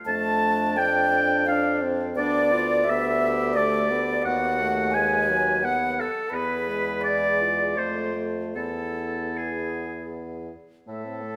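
An up-front oboe carries the second line alongside an airy concert flute, whose crisp attack and vibrato shape the melody in this elegiac, solemn slow movement for wind quintet, cut from a longer classical piece and moving in a rubato three-beat lilt. A clear clarinet and a French horn with a soft attack and smooth top fill out the accompaniment, while a bassoon with light vibrato holds the bass. The harmony darkens through diminished and dominant colours before settling onto E at 8.5 seconds, and all five instruments sound from the opening moments to 11.4 seconds in the lush reverb of a scoring stage.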